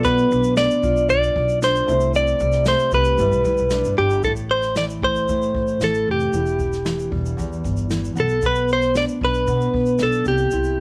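Acoustic pop in A minor at 115 BPM, tender and reflective, this excerpt puts a clean, compressed, direct-recorded electric guitar up front with a picked melody between G4 and D5, over a full-bodied, fingerpicked jumbo steel-string acoustic guitar and a woody pizzicato upright bass. A soft, felt-muted upright piano with audible action noise sits in the background until 4.3 seconds, while a jazz kit played with brushes adds a boomy kick, a medium-tuned snare and shaker in an airy studio room. Light reverb gives the mix a gentle sense of space as the chords move from Bdim, C6 and G6 into Am, Em and Bm7, arriving on C at 10.3 seconds.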